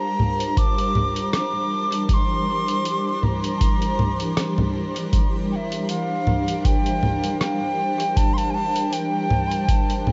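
Ambient dub at 79 BPM in 4/4, with a gentle 16th-note swing, this hazy, meditative fragment of a longer piece sits on a single Gm11 chord in G dorian, tuned to A4 = 445 Hz. A bright wooden flute carries the melody between E5 and D6, its pure, expressive tone shaped by vibrato and tongued notes and trailed by dub echo. Beneath it, a granular cloud pad holds sustained chords from E3 to C5, blurred and detuned, with slow attacks, long releases and its own built-in reverb. A lo-fi sampler-style kit of congas, hi-hat and rim click enters at 0.2 seconds, pitched down, compressed and muffled with a tape-like softness. At 0.6 seconds a deep, overdriven electronic kick joins, sitting loudest in the mix with the grit of a small room. The whole recording rests in a huge ambient reverb over a bed of vinyl crackle, its top end dulled.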